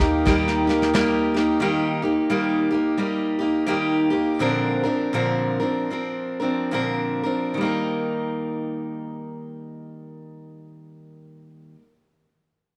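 A bright, up-front picked steel-string acoustic guitar carries this hopeful, gently swung folk excerpt, its finger squeaks audible as it plays on alone after 1.6 s and the pace slows until 7.6 s. At the opening, a reedy, breathing pedal harmonium sits in the background with a woody pizzicato upright bass, a dark, soft brush kit with a tight kick and rolled-off top, and a barely audible, slightly broken-up lo-fi electric guitar melody. A moderate echo chamber reverb lends the small-band sound a gentle halo.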